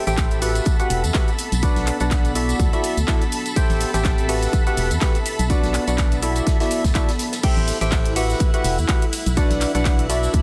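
A swung sixteenth-note groove in 4/4 drives this bittersweet, energetic piano house cut, anchored by an up-front electronic kick that is layered, punchy and tape-warm, with a small-room character. Around it, a tape-warm analog drum machine supplies crash, handclaps, hi-hat, ride and shaker, while a very quiet unplugged kit adds an airy hi-hat and a medium-tuned snare played with bundle sticks, and a tambourine sits in the background with an egg-shaker and group-handclap flavour. An organ-like FM bass, hollow and dark with a fast, decaying attack, pumps against the kick up front, and a percussive organ stab riff, hollow with ring modulation and a noise layer, rides on lush chorus and dub echo. Beneath them a silky, bright analog string pad holds sustained chords with vibrato and ensemble chorus, and a deep, moody ambient pad with a sub octave and built-in reverb glows in the background, both breathing with the sidechain. 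The chords cycle through Am7, Emadd9, Bm and Dadd9, and at 7.4 s the piece moves into a drop that carries the dense, heavily limited modern master to the end of this fragment.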